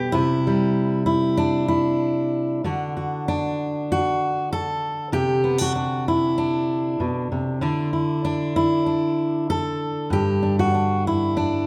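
A straight 4/4 pulse at 96 BPM carries this gentle folk piece in D mixolydian, played by a single fingerpicked steel-string acoustic guitar with a full-bodied jumbo tone, fresh strings and an up-front placement. The guitar ranges from G2 to B4, moving through C, D, Cadd9 and Dsus2 before settling on G5, with the second section beginning at 2.6 seconds. A moderate scoring-stage reverb with a 2.0-second tail surrounds it, and the passage is cut from a longer piece.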